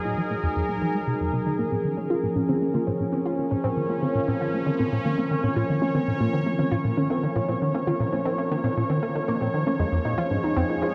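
Ambient, sequencer-driven space music with a cosmic, hypnotic mood, cut from a longer piece and soaked in a huge, dreamy reverb. A smooth portamento lead with vibrato drifts in the background only until 1.1 s, while an evolving, airy, bright resonant pad holds sustained chords up front and a punchy, funky analog bass with tape echo drives a riff beneath it. At 1.6 s a warbling, lo-fi, detuned pluck adds chorused arpeggios as the harmony moves from Fm7 to Bbmadd9 and back to Fm7.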